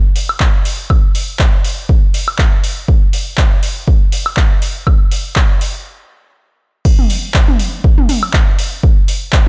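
Raw and driving, this house groove cut from a longer piece swings its sixteenths as a punchy analog electronic kick pounds up front beneath an electro analog drum machine of metallic hats, handclaps, toms, woodblock and crash cymbal that carries the ring of a large room, halting for a stop at 5.9 seconds before the drop lands at 6.9 seconds with close, dry sound overall.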